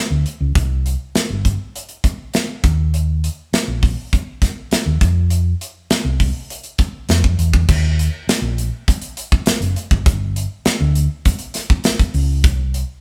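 Lush 1970s-style soul with a smooth, warm mood, this short cut from a longer piece features just bass and drums, heard as a band playing live in one room with light reverb. The hollow-body short-scale electric bass, fingered and amped, comes in at 0.1 seconds with a dark, round tone that sits up front, moving through a low register. The modern studio drum kit joins at 0.3 seconds, sounding acoustic and airy yet polished, with a punchy kick, a medium-tuned snare, hi-hat and crash cymbal captured in a small room. The drums are also up front, giving the pair a close, intimate presence. The groove runs in a straight 4/4, shifting into a new section at 7.7 seconds and carrying on until the excerpt ends.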